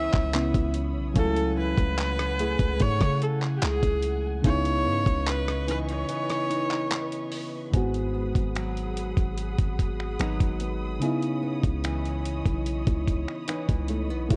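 Moody and sensual, this contemporary R&B excerpt moves at an unhurried 73 BPM in C# minor, drifting from C#m9 and F#m9/C# to G#m7 and back. Up front, a bright solo viola carries the melody with a biting edge, light vibrato and an airy, earthy bow, singing from the start until it falls away at 7.3 seconds near the end of a short break. Beneath it, a soft, round FM electric piano with chorus sits dark in the background, while a fingerpicked nylon-string guitar spins small arpeggios through a digital delay. A lush studio string section holds smooth sustained chords that pump against the sidechain. The low end comes from a deep, boomy 808-style bass and a gritty, compressed sampler-style drum kit entering at 0.1 seconds with a thumpy kick, hi-hat, rim clicks, finger snaps and handclaps. The whole recording is wrapped in worn, warbling cassette tape character with a warbly pitch drift.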